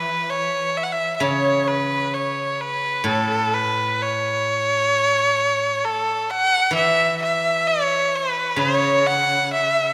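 Pastoral and festive in mood, this short passage of Chinese traditional music is cut from a longer piece and moves at about 65 BPM in 4/4 with a free, rubato feel. A single bowed erhu carries the melody from start to finish at 9.9 seconds, sitting close and up front with a nasal, earthy tone, light vibrato and gliding portamento between notes. Beneath it, a steel-string zither plucked with fingerpicks supplies the accompaniment in a low register, its silvery, ringing strings giving the texture a bright shimmer. The zither sits well behind the erhu in level, leaving the bowed line clearly in focus. A moderate concert hall reverb surrounds the ensemble, and the instruments are tuned slightly high, to A4 = 441 Hz.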